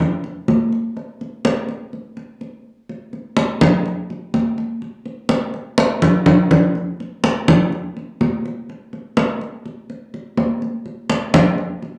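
Congas carry this relaxed, danceable Latin piece on their own, playing from 0.0 to 12.0 s in a straight 4/4 feel. Their high-tuned, thin-skinned heads give a bright, acoustic ring, and the hard hands striking them come through clearly. The drums sit up front in the mix, yet a large-room quality lends them a slightly distant air. A short drum fill breaks the groove from 5.8 to 6.8 s. A wet studio reverb with a brief tail surrounds the playing, and the whole passage is cut from a longer piece.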